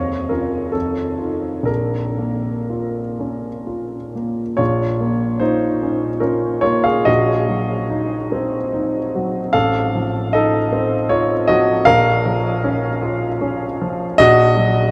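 In a flexible, rubato triple metre, this brooding, passionate romantic character piece for solo grand piano, cut from a longer work, sounds intimate and up front with audible action noise, its minor-key harmonies moving from F7 back home to Bbm at 1.7 and 11.9 seconds before settling on Gb/Bb at 14.2 seconds, all bathed in a huge, echoing reverb that fills a vast space.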